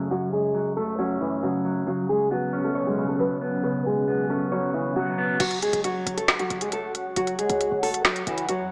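The half-time trap groove sits at 136 BPM in 4/4, a menacing, dark excerpt of hip hop in F# minor. It opens with a clean, fingered electric guitar playing low-pass-filtered accompaniment up front, moving from F#m to Bsus2 under a filter sweep, while a nylon-string guitar carries the melody from 0.1 seconds with a woody, thumb-plucked tone on old strings. Behind them a warbling, nostalgic tape-like pad holds detuned sustained chords with slow attack, chorus and its own reverb, lending a lo-fi haze. At 5.4 seconds the electric guitar stops and the trap drum kit arrives up front with a woody snare, crisp hi-hats, finger snaps and a crash cymbal, joined by a punchy, tight 808-style bass sitting low in the background as the harmony returns to F#m. The whole mix is muffled by a low-pass filter and a small-speaker character, set in a moderate concert hall reverb.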